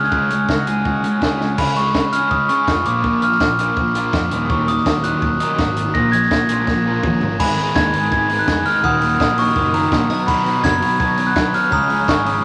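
Driving straight 4/4 at 166 BPM from a compact cocktail drum kit with a punchy kick, high-tuned snare and dark cymbals, with fills at 1.4 s and leading into 7.4 s, this moody, bittersweet indie rock clip pairs a sludgy distorted guitar and a bright overdriven guitar on riffs over a bright picked bass sitting in the background. Up front, a close-miked glockenspiel played with rubber mallets carries the ringing, mellow melody, while a very quiet tonewheel organ with chorus vibrato and a fast rotary speaker adds round sustained chords from 4.5 s. From 7.4 s, a crystalline FM synth bell with chorus traces a second line as the chords move through Abm, Ebm and B back to Db, all in a large, wet studio reverb.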